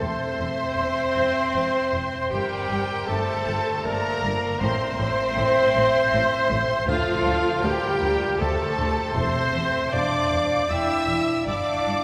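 A full orchestra opens at once, with a focused, rich chamber violin section singing the melody high above the ensemble in a tender, hopeful film-score passage taken from a longer piece. Flowing in a gently rubato 3/4, the harmony moves from C/E through Gm, Am and Dm7, returning to C/E before resting on G7(no3) near 11.5 seconds. Beneath the tune, a clear, distant studio violin section, an airy, hollow silver flute, a mellow cor anglais and a dark, very quiet clarinet trace supporting second lines. A smooth viola section fills in the accompaniment while a roomy French horn section holds sustained chords, and lush cellos and warm double basses, played with vibrato, anchor the bass together. Everything sits in a wet cathedral reverb that lends the emotional, cinematic sound a spacious, church-like glow.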